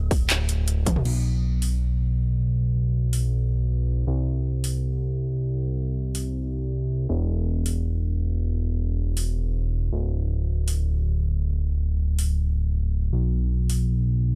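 Future bass with a bittersweet, dreamy mood and a half-time feel, this short fragment opens on a drop where a hard-clipped electronic kick drum sounds only until 0.9 seconds, as a drum fill arrives, while a fat, detuned sawtooth-and-square analog bass with a moving notch filter and sidechain pumping sustains low and up front, and an overdriven dubstep kit of crash cymbal, handclaps, metallic hi-hats and toms, re-recorded in a small room, drives on up front through a dry mix.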